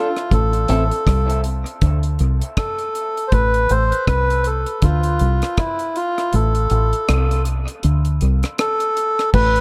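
A reedy, breathy melodica opens this heavy, meditative dub reggae excerpt, carrying the melody between E4 and C5 with dub echo trailing its nasal, boxy tone. A picked, slightly broken-up electric guitar sounds alongside it only briefly, falling away at 0.8 s with its own echo. A dry reggae drum kit enters at 0.2 s with a tight kick, hi-hat, rim click and crash cymbal, settling into a slow 80 BPM groove in 4/4 with a swung sixteenth-note feel. A dark, round, foam-muted fingered bass arrives at 0.3 s and sits loudest in the mix, anchoring the low A1 to D2 range. The harmony moves slowly between Am, D5 and Dm under a light, small-room reverb, and the kick drops out at 6.3 s, leaving the bass, melodica and remaining drums to carry the closing stretch of this fragment.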